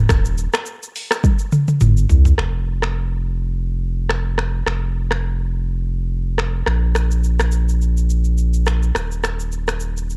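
Afrobeats at 105 BPM with a gentle 16th-note swing, romantic and breezy, this short cut from a longer piece pairs a thick, saturated sub bass, deep and sustained with a fast attack, with an up-front electronic afro-pop kit of finger snaps, dark hats, shaker, rim click, toms and a deep kick carrying a cassette-tape character, where a drum fill from 1.2 to 2.4 seconds leads into the next section in a dry home cassette recording.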